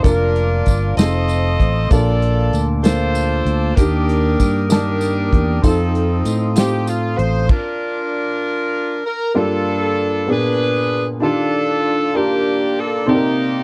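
Jubilant yet reverent, this slow gospel excerpt in Bb major moves in a straight 6/8 at 64 BPM, with a clear, up-front saxophone section carrying the melody over a woody, slightly detuned upright piano. Until about 7.5 seconds a mellow, flute-like tonewheel organ with fast rotary speaker sits in the background, joined by a round, punchy fingered electric bass, a dark, smooth soul drum kit with a punchy kick and dark cymbals, and a faint jingly tambourine. Then the band stops, leaving saxophones and piano to finish alone over richer chords such as Gm9 and Ebmaj9#11, all captured in a dry, close 1970s-style studio sound.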